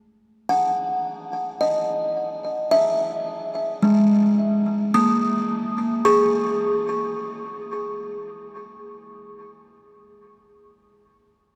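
Ambient fragment, peaceful and luminous, moving at a slow 54 BPM in a straight 3/4, tuned to A4 = 439 Hz and cut from a longer piece. A lone buzzing kalimba sits up front for the full 11.5 seconds, its thumb-plucked tines sounding woody and hollow and ringing across a span from G#3 to D#6, with delay trailing each note. The harmony drifts from F#m/A to C#madd9 at 1.6 s and a rootless A#m7 at 8.3 s, all inside a vast, wet reverb with a 6.9-second tail and a dark, warm production.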